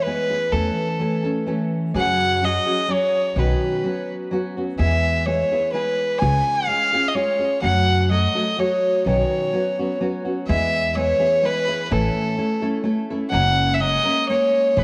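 Set in a wet echo chamber, this proud, festive mariachi fragment in three-four time puts a single bowed violin up front, its smooth, earthy tone carrying the melody with light vibrato and a touch of tape echo. Beside it, a dark, full-bodied nylon-string guitar is fingerpicked with audible finger squeak, and from 0.5 s a woody, thumpy upright bass on gut strings is plucked underneath. The chords include suspended and added-note colours.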